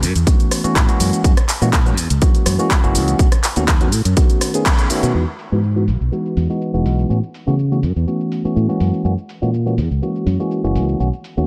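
A punchy, overdriven electronic kick sits up front in this joyful, feel-good filtered disco house excerpt at 123 BPM, thumping from 0.3 to 4.8 seconds beside a growly, bright fingered electric bass that pumps against the sidechain under a low-pass filter. A worn, slightly out-of-tune tine electric piano heard through built-in speakers carries chords like A6, F#7, B9 and Emaj9 with phaser, 12-bit sampler grit and pumping. A layered house kit of handclaps, hi-hat, rim click and shaker, overdriven and filtered, rides under filter sweeps and light digital reverb, with a band accent at 4.7 seconds.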